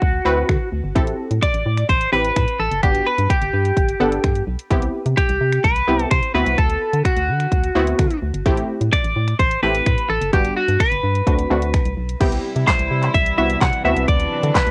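Confident and energetic, this dance-pop excerpt has a straight drive and the hazy grain of a home cassette recording with light reverb. A clean, twangy twelve-string electric guitar carries the melody up front, its picked, compressed tone softened by cassette tape and trailed by tape echo. Beneath it, an organ-like FM bass with a hollow, dark, percussive attack pumps against the kick, while a house drum kit, also colored by cassette tape, layers a punchy kick and snare with crisp hi-hat, handclaps, finger snaps and a crash cymbal. A round, detuned sawtooth analog pluck with a noise layer, chorus and a filter sweep fills out the accompaniment, pumping alongside the bass under jazzy chords such as D13, Am7, Gmaj7 and Cmaj7. At 12.2 s a studio string section enters with bowed, sustained chords in a reedy, gut-string period style with a smooth top, also pumping to the beat through the final seconds.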